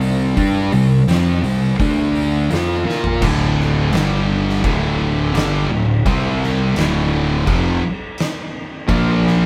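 In a straight 4/4 at 85 BPM, this ominous, sludgy stoner and doom metal excerpt in D minor is built on an oversized, low-tuned acoustic drum kit with a punchy kick, fat snare and gritty saturation in a pumping stone room, a growly overdriven fuzz bass, and a dark, thick fuzz guitar riff. A second up-front fuzz guitar joins them and drops out at 3.2 seconds, just after a drum fill from 2.9 seconds. At that point a bright, double-tracked, overdriven sludgy guitar enters, and the second fuzz guitar returns at 8.9 seconds, the band playing live together in one room with light reverb.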